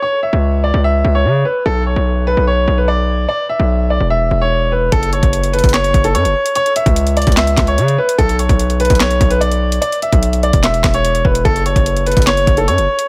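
A clear grand piano opens this eerie, dark trap excerpt in F# minor, carrying a melody through a tape echo over a cycle of C#m, Bm, E5 and F#5, as a distorted 808-style bass with a saturated, heavy sine tone and a fast attack arrives at 0.3 seconds. At 4.9 seconds a produced trap drum kit joins in half-time at 147 BPM, with a knocking kick, sharp snare, handclaps and bright hi-hats. The piano, bass and drums all sit up front in a light reverb.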